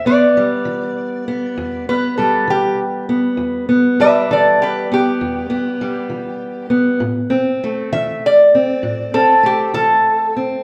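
A reverberant recital-hall ambience surrounds this short fragment of acoustic country blues, cut from a longer piece and recorded in a church or concert hall. At 66 beats per minute in a 12/8 metre with a straight feel, the music sits in E minor and carries a smoky, soulful mood. A lap resonator guitar, played with fingerpicks and slide, sings the melody up front with a metallic, nasal voice between G4 and E5. Beneath it, a fingerpicked steel-string parlour guitar with old strings supplies a dark, woody, boxy accompaniment from E2 to C4, also placed close. The harmony rests on E minor before moving to A minor at 7.0 seconds, and the resonator falls silent at 10.3 seconds while the accompaniment rings on to 10.6 seconds.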